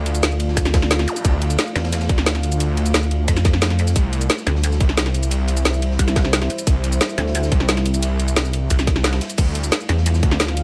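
Futuristic and mechanical, this short cut from a longer dark technical drum and bass track moves in a straight 4/4 over a progression that shifts from D minor to C and back. A deep, moody ambient pad holds sustained chords throughout, its slow attack and long release blurred by chorus and its own reverb, with a sidechain pumping that ties it to the beat. Underneath, a thick, detuned saw bass sits up front with chorus and tube saturation, joined from 0.6 seconds by a heavy, compressed pluck wobble bass that pulses with saturated grit. The drums stack a tight electronic kick, treated with studio reverb, over an overdriven drum and bass kit with a woody snare, bright hats, crash and shaker, while a very quiet breakbeat kit adds dark cymbals and a gritty, rolled-off snare and ride. A brief electronic zap flicks past at 1.1 seconds, and the overall mix stays dry and close.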